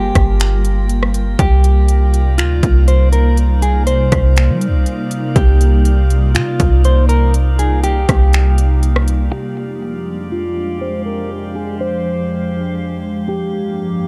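A deep, boomy 808-style bass and an overdriven trap kit with hard-clipped kick, crisp hats, snaps and rim clicks anchor this ethereal, melancholic half-time cloud-rap fragment beneath a detuned, airy pad, a clean, fingered electric guitar melody softened by delay, and a faint glassy texture of drifting overtones, until bass and drums drop out by 9.3 s and a filter sweep carries the dark remainder to the cut at 14.1 s.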